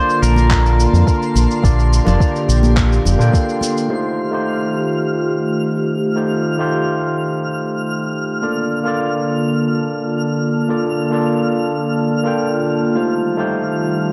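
Sunset chillout with a sunny, warm mood, this excerpt is cut from a longer piece in a straight 4/4 groove, under a dark production and a lush hall reverb. A pedal steel guitar, clean and played with fingerpicks and slide, carries a short melody with delay that stops at 3.3 seconds. Beneath it, a barky, overdriven tine electric piano runs through a combo amp up front, filtered and delayed, while an airy, breathy pad with chorus sustains the chords and a twinkling granular texture adds a sparkling, octave-up shimmer high above. A deep, round dub bass, fingered and up front, anchors the opening alongside a soft overdriven electronic kick, gritty sampled cabasa and handclaps, and bright, dry congas in the background, all of which drop out by 3.9 seconds. From there the keys, pad and texture carry on as a filter sweep on an analog synth pad unfolds, with the harmony moving between Bbmaj7 and F9.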